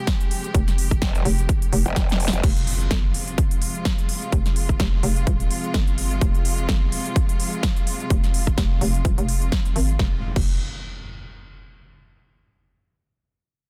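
A rich, lush string section opens this bass house excerpt with sustained F minor chords at 127 BPM, its bowed ensemble tone smooth and close with gentle vibrato, pumping under the sidechain from the very start. Almost at once a punchy, overdriven electronic kick sits up front alongside a big-room dance kit of crisp hats, punchy snare and crash cymbal, all swung lightly on the sixteenths for a swaggering, bouncy feel. A hollow, knocking FM bass enters at 0.5 s, its fast attack and decaying notes giving the low end a springy punch. Between 1.0 and 2.4 s a growling, wobbling bass joins on a low F, bright and saturated with chorus and a formant-filtered snarl, before a drum fill leads into an electronic impact in the background. The dense, heavily limited mix stays dry and forward, and at 10.0 s the chords drop away as a second impact rings out.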